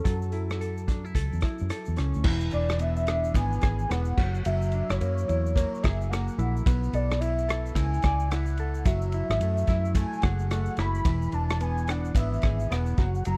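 A 4/4 groove at 109 BPM, with a 60% swing on the sixteenths, drives this hazy, lonely slice of indie bedroom pop, cut from a longer piece and tuned to A4 = 439 Hz. A raw garage drum kit sits up front with a tight kick, rim clicks, hi-hat, shaker, ride and crash, its tone dark and rolled-off on top. The vintage muted fingered bass, round, punchy and foam-muted, joins the drums at 0.1 seconds. Over this, a clean, compressed semi-hollow guitar comps through analog chorus with a warbly pitch drift. A velvety synth lead of detuned sawtooth and triangle voices carries the melody with a fast attack and sustained, mellow notes, wrapped in lush chorus and slapback echo. After a brief opening on F#m7, the harmony moves at 2.3 seconds through E7, F#9, Bm11 and F#m9 before returning to E7, all captured in a dry, close 1970s-style studio sound.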